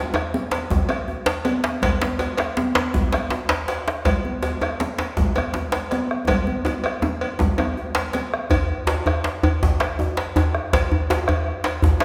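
A rolling 12/8 pulse drives this short cut from a longer West African traditional drum ensemble piece, with a festive, driving mood. A metallic cowbell and a deep, dark bombo anchor the groove, while one medium-tuned djembe buzzes with metal rattles in the room as the loudest voice. A second djembe, played with soft hands, sits close, dry and up front. High-tuned, ringing congas, also touched with soft hands, add a brighter layer until they drop out at 8.3 s, partway through a drum fill that runs from 6.3 s to 8.5 s. From 8.5 s the ensemble moves into a new section, and the whole performance carries the resonant tail of a church or concert hall.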